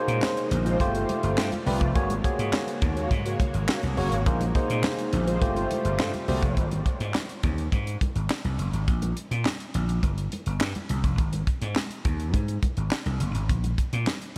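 The excerpt opens on a barky, clean tine electric piano with a subtle chorus, laid over a lush, slow-blooming string machine that sits very quietly beneath it, as the chords move through suspended ninths on Bb, G and Ab. Within the first second a tight funk drum kit joins, with a high-tuned snare, tight kick, hi-hat and handclaps up front, alongside a growly, punchy slap bass and faint, thin-skinned congas. This is danceable, feel-good early-eighties boogie funk at 104 BPM in a straight 4/4, and from 0.7 seconds a round, dark synth brass line with vibrato, chorus and tape echo hovers in the background. The electric piano, strings and brass drop out around 6.6 seconds, leaving bass, drums and congas to carry the groove, briefly landing on an Ab5 power chord before the harmony falls away again. A huge ambient reverb gives the whole mix a dreamy, soaked quality, while the drums themselves stay dry and close.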